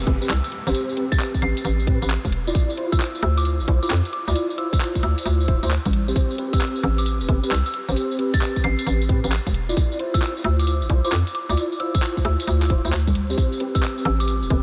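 A hollow, knocking FM bass sits up front in this soulful, moody two-step UK garage clip, its punchy, bouncy notes striking fast and decaying beneath a swung sixteenth-note feel. A tight, layered electronic kick shares the forefront, while a produced garage kit adds bright hi-hats, handclaps, rim clicks, tambourine and congas. A mellow tine electric piano plays clean stabs through its built-in speakers, coloured by ensemble chorus and tape echo, as the harmony moves between Am9 and Dm9. High above, a glassy synth bell carries the melody from 0.3 to 14.3 seconds, its crystalline, warbling vintage FM tone treated with chorus, phaser and tape echo and kept in the background with a long release. A very quiet downlifter sounds over the first 2.5 seconds, and light digital reverb adds ambience to this section cut from a longer piece.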